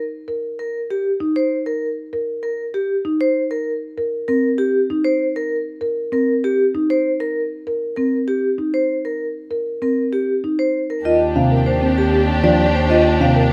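A straight 6/4 pulse at 195 BPM drives this hypnotic, propulsive minimalist classical excerpt, where woody, round soft-mallet marimba arpeggios sit up front beneath a metallic, ringing hard-mallet vibraphone melody with medium motor vibrato over Cm7, until at 11.0 s the harmony turns to Ebmaj9 as lush, distant bowed strings hold sustained chords and a rich, up-front bowed double bass sounds Eb2, joined at 11.4 s by mellow, shadowy grand piano accompaniment, all captured with close, detailed microphones and light reverb.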